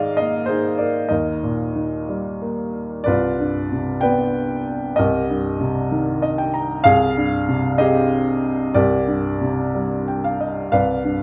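Calm and peaceful, this short passage of lyrical classical solo piano drifts at 62 BPM in 6/8, with uneven, rubato beats that open in Eb major before shifting to C minor at 3.1 s. A woody, polished upright piano sits up front with long sustain, moving through rich chords such as Cm7, Abmaj7/C and Cm11, and it adds brief fills at 5.9 s and 9.7 s. A moderate recital-hall reverb gives the playing a gentle sense of space.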